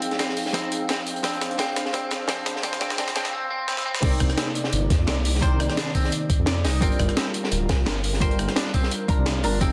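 This soulful, dreamy liquid drum and bass excerpt opens with a build-up in which a dark, hollow-body jazz guitar moves through a filter sweep with tape echo, while an airy, breathy pad holds chorused, pumping chords and a bright, twangy clean electric guitar plays arpeggios soaked in lush chorus. Two breakbeat kits carry the drum fills: a gritty sampler-style kit with a high-tuned snare and crash, and a crunchy, saturated kit with a rolled-off top sitting in the background, both under a thumpy electronic kick. At 4.0 seconds the drop arrives as a deep, rumbling detuned saw bass enters up front over Cm9 and Gm7, all set in a moderate digital room reverb and a dense, heavily limited master.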